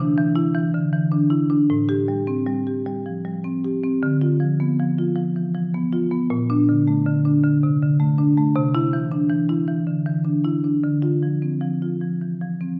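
Classical contemporary music for solo marimba, this short passage drifts at 78 BPM in a rubato 3/4 with a hypnotic, flowing mood in D minor. The marimba, struck with medium mallets, plays alone from 0.0 to 12.8 seconds across a range from A2 to G4. Its padauk bars sound woody and mid-forward as the harmonies move from Cadd9 through Am7, Dm6 and Bbmaj7, return to Cadd9, and then settle on Dm7. The instrument sits up front with a warm tone, yet the listening position is further back in a recital hall whose wet reverb of 1.3 seconds surrounds the notes.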